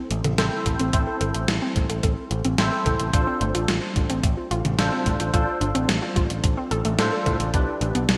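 A barky, lightly overdriven tine electric piano sits up front with chorus and delay, playing stabs over an Am to Dm7 to G6 progression in this driving, cinematic synthwave excerpt at 109 BPM. Beneath it, a warbly, dusty square-and-saw pluck spins mellow lo-fi arpeggios, while a punchy picked electric bass anchors the low end. A clean 12-bit drum machine with gated reverb drives the hi-hat, a medium-tuned snare and toms, joined by a thumpy electronic kick from 0.7 to 7.6 seconds, all set in a lush hall with a glossy 1980s digital sheen.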